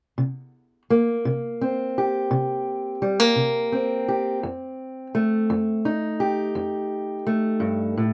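A dark, warm recording with a wet booth ambience frames this soulful, swaggering excerpt of acoustic country blues in a straight 12/8, where a boxy, up-front fingerpicked parlour steel-string guitar plays alone from 0.2 to 8.1 seconds, moving from a C5 chord to F7 at 4.4 seconds.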